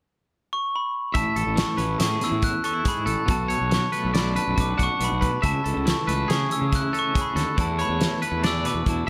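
Math rock and midwest emo in an intricate, bright 5/4, this excerpt opens with an up-front, bell-like glockenspiel melody struck with soft plastic mallets at 0.5 s, before the full band joins at 1.1 s over Amaj7, Bm7, Amaj7/C# and E7sus4. A twangy, scooped electric guitar picks clean arpeggios, while a compressed twelve-string electric guitar sits in the background with tremolo and slapback echo. Meanwhile, a round, dark fuzz bass with overdrive and a loose indie drum kit with a fat snare, tight kick and rolled-off top fill out a lush hall reverb that gives a big arena sound.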